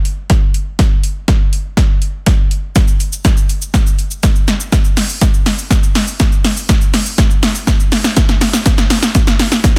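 Dry and dense, this short pop fragment has a heavily limited modern master that keeps the sound tight and forward. A house drum kit carries the whole passage, entering at 0.1 seconds and running to 9.8 seconds at a straight 122 BPM in 4/4. The electronic, layered kit puts a punchy kick up front alongside hats with a tape-warm glow, a shaker, and a snare that bites through soft clipping. The passage works as a build-up, shaped as a continuous drum fill. The mood is energetic with a bittersweet edge, as though it is leading into a larger section of the song.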